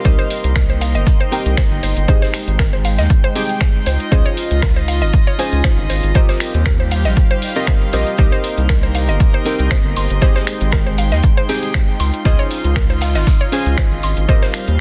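This deep house excerpt opens with a smooth, detuned analog pad and a soft, nasal chord stab carrying chorus and delay, joined at once by a reedy chamber string section bowing a gut-string texture. From 0.1 seconds a punchy electronic kick sits up front beside a round, dark analog bass with tube saturation, while a layered house kit adds finger snaps, shaker and hi-hats, its snare softly clipped. A very quiet acoustic kit with a medium-tuned snare, hi-hat and shaker sits beneath, giving the swung groove a natural studio-room edge. A woody, mallet-like FM pluck spins arpeggios through chorus and delay, and the pad, stab, strings, pluck and bass all pump with sidechain compression, lending the whole a hypnotic, deep mood. The chords cycle through Cm7, Abmaj7, Dbmaj9 and Eb69 twice inside a small room ambience, under a dense, heavily limited master.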